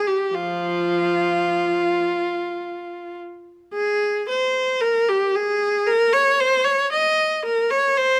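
A single bowed viola opens the recording, playing a baroque-style suite movement on its own, rich and focused in tone with vibrato. The mood is grave yet flowing, moving at a slow 52-58 BPM in 3/4 with a freely rubato feel. The line ranges from F3 up to Eb5, and the key settles into Ab major from 3.7 s, where the opening material begins again. The instrument sits up front, captured by close, detailed microphones, with a light reverb around it. This short passage of about 8 seconds is cut from a longer piece.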